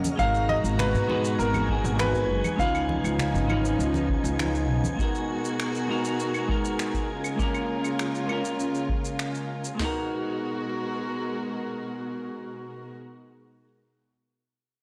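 Sunset chillout with a smooth, relaxed mood, set in a straight four-four groove and cut from a longer piece. A bright concert grand piano carries a short, brilliant melody through delay, and it falls silent at 3.8 seconds, while a woody, growly pizzicato upright bass sits up front with tube saturation until 4.8 seconds. Beneath them, a dark chamber string section holds intimate, sul tasto chords with light vibrato and a soft attack, and a clean, picked semi-hollow electric guitar plays accompaniment through a low-pass filter and digital delay. The rhythm comes from a soft vintage rhythm box with a deep kick, crisp snare and metallic hats, paired with an overdriven R&B kit of claves, finger snaps, hi-hat and shaker whose snare is softly clipped; both drum parts stop near 9.8 seconds. Thick-skinned, low-tuned congas and an airy, breathy wind-like noise layer sit in the background. The whole mix is bathed in a lush hall reverb and has a blown-out, overdriven character, with chords moving among G#m9, C#9 and A#m7.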